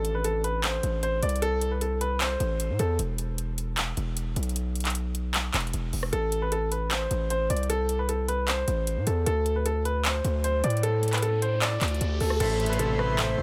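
A hard-hitting, melancholic trap excerpt in half-time feel, cut from a longer piece and set in a digital ambience. A clear, intimate grand piano carries the melody up front, its long sustain and audible action noise giving it a present, polished edge; it drops out for a break at 3.0 seconds and returns at 6.1 seconds. Beneath it runs a heavy, saturated 808-style bass, aggressive and distorted with a noise layer, sitting as far forward as the piano, while an electronic trap kit with metallic hi-hats, handclaps, rim clicks and crash cymbal drives the groove. A background layer of riser and downlifter effects enters at 10.5 seconds, the riser leading into a short closing section. There, warbling lo-fi synth keys, mellow and nostalgic with a detuned, chorused shimmer, arrive together with a reedy, full accordion holding sustained chords.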